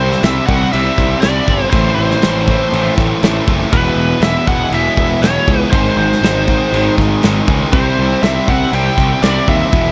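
A biting, overdriven lead guitar carries the melody over a growly, fuzz-soaked bass up front, while a scooped high-gain guitar and a sludgy guitar grind out riffs in the background and a loose indie drum kit with a punchy kick and dark cymbals drives this restless, anthemic quiet-loud alternative rock passage at 120 BPM, moving through C, Am, E and G# in light reverb.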